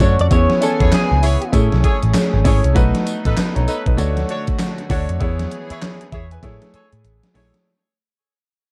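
A bright, clean electric guitar carries the melody at the start of this bouncy, upbeat new jack swing fragment, its picked line coated in analog chorus and delay before it drops out at 1.5 seconds. Underneath, an overdriven, gated 80s drum machine sits up front with a thumpy kick, a snare soaked in gated reverb, handclaps, hi-hat and tambourine, all riding a swung sixteenth-note feel. A dark, foam-muted picked bass is also up front, while a polished grand piano plays short-sustained accompaniment. Tight, jazz-style horn stabs cut through, while a reedy string section with light vibrato holds chords in the background over a progression that moves from E6 through Amaj7, B7 and Dmaj7. The mix has a dark, lightly reverberant character, and the piece begins fading at 2.8 seconds as a drum fill arrives at 6.4 seconds.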